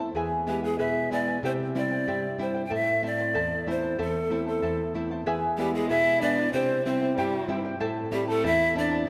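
Earthy and festive, this short excerpt of Andean folk in 2/4 sets a deep, full-bodied fingerpicked nylon-string guitar up front beneath a mellow, shimmering charango whose double strings are also fingerpicked. Breathy, bright cane pan pipes carry the expressive melody from 0.5 s with vibrato, soft chiffy attacks and lifted highs, while a single focused, rich bowed violin adds a second line from 5.6 s. A wet concert hall reverb surrounds the ensemble as the E, C and Am progression repeats.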